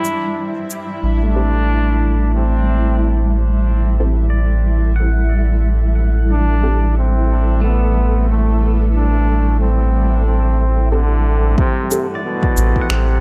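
A swung 4/4 groove at 91 BPM, with 57% swing on the sixteenths, carries this hazy, deep ambient dub fragment in A dorian, cut from a longer piece. A soft, round sub bass sits up front from 1.0 s, held on A1 with tube saturation, under a cloudy, detuned granular pad whose mellow, blurred chords are bathed in their own reverb. A bright trombone, with light vibrato and vintage 12-bit sampler grit, carries the melody through dub echo. In the background, a clean, twangy pedal steel guitar plays arpeggios with slide and volume swells, its low-pass filter sweeping through the long middle stretch, while a very quiet, muted sawtooth chord stab with chorus surfaces in two spots. Electronic shaker and finger snaps, low-pass filtered and set in a large room, open the break and return near the close, where a punchy, layered electronic kick joins at 11.6 s as the harmony rests on Am7 under a light reverb.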